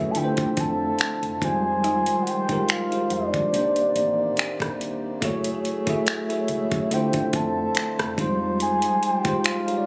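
A slow 71 BPM groove in 4/4 with a light sixteenth-note swing drives this late-night contemporary R&B fragment, its electronic drum kit sitting up front with a knocking kick, metallic hi-hats, finger snaps and rim clicks. Underneath, a vintage foam-muted fingered electric bass gives a dark, round, punchy low end until it drops out at 8.8 seconds. A bright, bell-like tine electric piano carries the accompaniment through a longing progression of minor ninth chords from Dm9 through Fm9, Cm9 and F#m9, while a reedy, breathing pedal harmonium holds mellow sustained chords in the background. On top, a soft octave-layered synth lead with a sub octave carries the melody, its tone thickened by chorus, tremolo, vibrato and digital delay. A very quiet, woody, full-bodied FM pluck adds percussive texture until 7.0 seconds, and the recording sounds as if captured on a phone in a club-like room with reverb and compression.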